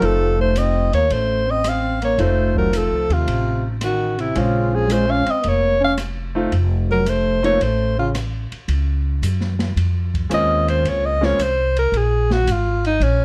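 A bright, up-front alto saxophone carries the melody with light vibrato and scooped notes, moving into a solo at 8.7 seconds in this moody, late-night small-group swing and bop cut in Bb minor at 111 BPM, over F7 and Bbm7 harmony. A clear, close-miked trombone with its own vibrato plays a second line until 8.1 seconds, while a brilliant, intimate baby grand piano with audible action noise accompanies until 11.4 seconds. A woody pizzicato upright bass sits up front, and an open acoustic drum kit with dark cymbals, a boomy kick and a rolled-off top adds hi-hat, ride, snare and rim clicks, all in a dark production with light reverb.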